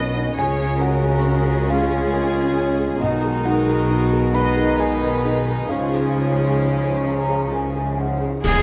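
Soft, gently reverberant orchestral sound opens this short cut from a longer cinematic film score, a longing, moving passage in 6/8 that drifts at a slow, rubato 45 beats per minute. A warm violin section carries the melody with a floating, sul tasto tone, shadowed by a second, more intimate violin section with light vibrato, a distant classical clarinet, and a quiet French horn section holding smooth sustained chords. Beneath them, a woody viola section and a felt-muted upright piano, thick and vintage with audible action noise, supply background accompaniment. The bass is anchored by a lush, up-front double bass section and a pure, distant cello section, moving through a Db to Abm7/Cb and back to Db. At 5.7 seconds, close, dry percussion enters with a cymbal swell, clash cymbals with a shadowy tone and concert bass drum. An airy, hollow flute ensemble joins at 7.1 seconds, and the whole band lands an accent at 8.4 seconds.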